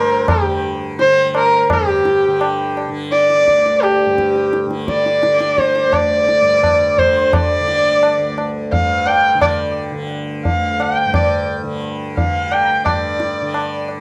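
A buzzing, shimmering tanpura drone, a rich bowed sarangi and a very quiet, reedy harmonium open this meditative, longing Hindustani excerpt together, with low-tuned tabla joining at 0.3 seconds. The music is in raga malkauns on D, in a straight 4/4 around 86 BPM that speeds up throughout, and it is tuned slightly high to A4 = 441 Hz. The sarangi sits up front and carries the melody with light vibrato, smooth gliding portamento and the resonance of its sympathetic strings. Beneath it, the breathing harmonium traces a second line while the tanpura holds the low drone and the tabla keeps time with a short ring and a small-room character. The sound is dry and close, like a 1970s studio recording, and the sarangi drops out at 13.8 seconds, just before the tanpura and tabla finish.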